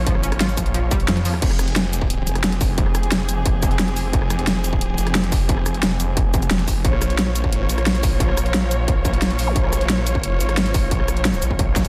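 Mechanical and dark, this excerpt of technical drum and bass in F minor drives straight ahead at 177 BPM, sitting in a drop throughout its roughly 12 seconds. A snarling, distorted saw bass growls up front with detuned sawtooth grit, a moving notch and a sustained, compressed weight, pumping with sidechain compression alongside the distant, bowed chamber strings that hold dark, vibrato-laden chords. The dubstep drum kit is tape-warm and forward, with a huge snare, bright hats, rim clicks, shaker and crashes, while a distorted, layered electronic kick punches beneath and briefly drops out from 1.1 to 1.4 seconds. A round analog pluck with chorus and dub echo plays arpeggios in the background only at the very start, before the harmony moves from Bb minor to F minor at 1.4 seconds and back to Bb minor at 6.8 seconds. A small electronic zap flickers in the background at 9.5 seconds, and the dense, heavily limited master keeps the sound dry and close.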